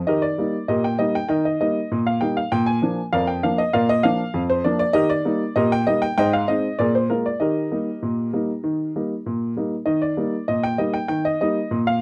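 A straight, even two-beat pulse drives this cheerful, playful ragtime cut from a longer piece. A solo upright piano carries it alone from 0.1 seconds to the close at 12.0 seconds, ranging from F2 up to Ab5. Its tone is woody and slightly detuned, with a short sustain that keeps each note crisp, and it sits up front in the sound. The opening phrase runs until 9.9 seconds, when the same strain begins again, giving the short passage a tidy, repeating shape. The dry, close 1970s-style studio sound adds only light reverb, so the piano stays clear and present throughout.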